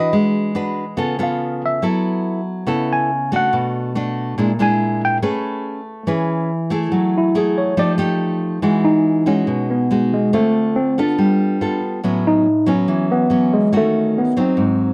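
This bossa nova cut has a relaxed, breezy mood, moving at 141 BPM in 4/4 with a straight feel in E major. A worn, slightly out-of-tune tine electric piano carries the melody, lightly overdriven through a combo amp and given a plate reverb, and it takes a solo from the start until 8.6 seconds. Beside it, an acoustic nylon-string guitar plays the accompaniment in a full-bodied classical tone, fingerpicked with audible finger squeak. Both parts sit up front under close, detailed microphones in a small room. The harmony drifts through rich colours such as G#m7b5, C#aug7, Amaj9 and F9, then settles on Emaj9 at 8.6 seconds as a new section begins, moving on through Dm7, G9 and A69 before ending on D#m7b5.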